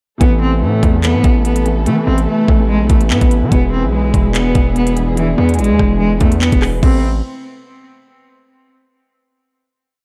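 A dark, reverberant production frames this short, menacing drill hip hop piece in A harmonic minor, moving at 145 BPM with a half-time feel over Amadd9 and E chords before settling on a final Amadd9 at 6.8 seconds. Up front, a knocking electronic drill kit drives skipping, crisp hi-hats with fast rolls, handclaps, rim clicks and crash cymbal, while a heavy, saturated 808-style bass carries long sub notes that follow the kick, with pitch slides, and rings on alone until 7.2 seconds. A clear, focused solo cello plays a looping, sampled-sounding melody with vibrato and tape echo, backed by mellow, boxy piano chords and a lush symphonic string pad in the background.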